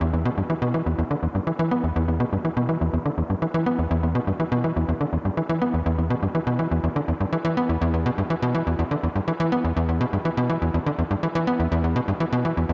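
A tight sequencer bass plays alone throughout this 12.7-second ambient excerpt in E minor at 123 BPM, its punchy, nasal sawtooth and square-wave filter plucks sitting up front through cassette tape and delay, while a wet spring reverb and echo-heavy mix give the mysterious, hypnotic groove its driving, evolving pull.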